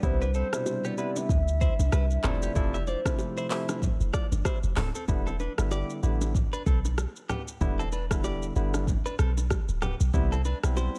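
A swung sixteenth-note afrobeats groove at 95 BPM in 4/4 drives this breezy, joyful clip cut from a longer piece, built on an electronic afro-pop kit with a deep kick, metallic hi-hats, handclaps, rim clicks and shaker placed up front. Beneath it, a clean 808-style sine bass booms with a fast attack and dark decay, while congas and bongos ring acoustically in the background of a live room. A barky, bright tine electric piano carries the accompaniment throughout, and a direct-recorded electric guitar enters at 0.2 seconds with a picked, compressed, twangy riff coloured by spring reverb and delay. A hollow, woody clarinet-like synth lead sings a soft, mellow melody with vibrato, chorus and delay in the opening seconds, as a very quiet, moody sawtooth pad with a sub octave holds sustained chords until 5.1 seconds. The harmony moves from Cmaj7 to Fmaj7, then settles on Em7 as the second section begins, returning to Cmaj7 at 10.1 seconds, all inside a digital ambience.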